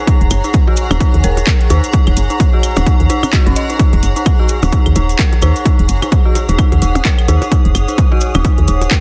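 Minimal techno at 129 BPM in Eb minor, cool and clinical, this short cut opens at 0.0 seconds with a blurred, evolving granular cloud pad with sidechain pumping, over the punchy, overdriven electronic kick up front, joined by an eerie, warbling detuned synth bell riff with chorus and delay, a house kit of metallic hats and handclaps, a grainy cabasa in the background, percussion blips and claves with tape echo, and a woody, round FM bass that enters at 0.2 seconds, all within a dense, heavily limited digital ambience.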